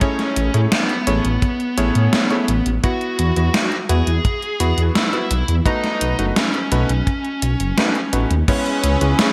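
Moody and cinematic, this synthwave excerpt at 85 BPM sets a dark, overdriven picked lead guitar melody over clear, clangy electric grand piano stabs, a gated 80s drum machine with overdriven crash, hi-hat and gated-reverb snare, a tight, dry acoustic kick that drops out from 7.8 to 8.5 seconds, and a deep, rumbling detuned saw bass with sidechain pumping entering at 0.4 seconds, while at 8.5 seconds an airy, dreamy chorused lead and a swirling phased pad with 12-bit grit arrive in the background as the Amaj7, Esus2 and B7 progression turns to C#m7, all in a bright 1980s-style digital production washed in lush hall reverb.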